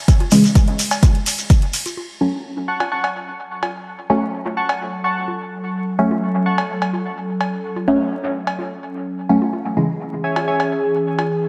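A meditative, nocturnal dub techno fragment opens with a deep, overdriven electronic kick, a deep house kit of metallic hi-hat and ride, and a grainy acoustic shekere, all of which fall away by 2.0 s, while analog-tinged bongos and cowbell with dub echo carry on beside muted, detuned dub chord stabs ringing through phaser and echo; warbly, nostalgic lo-fi synth keys add a mellow riff from 2.7 s, and a dark, slow-blooming tape-like pad enters at 3.7 s under a filter sweep, its chorus and pumping set in a lush hall reverb with bright 1980s-style digital sheen and vinyl crackle.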